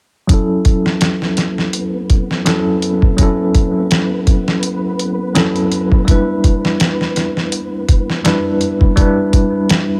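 Trip hop in a melancholic, dark mood, this fragment from a longer piece pairs a bell-like, up-front tine electric piano, colored by tremolo, vintage 12-bit sampler grit, tape echo and a filter sweep, moving from F#m7 to G6 at 6.1 seconds, with a compressed, dusty soul sampler-style drum kit of thumpy kick, medium-tuned snare and hi-hat, while a faint, flickering granular texture with its own reverb drifts in the background from 1.0 seconds, in a largely dry room.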